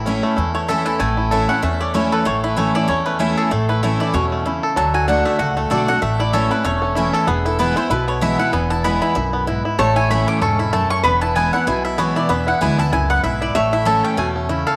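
A moderate plate reverb gives this short excerpt of driving, virtuosic bluegrass a lingering sheen over a swung 4/4 pulse. A twangy, percussive fingerpicked banjo carries the melody up front beside a bright, full-bodied dreadnought guitar, while a dark, growly pizzicato upright bass anchors the bottom and a woody double-string mandolin, featured in a solo, enters with stabs at 0.5 s. At 9.8 s a nasal, metallic slide resonator guitar adds a second line as the chords move through A, D and E.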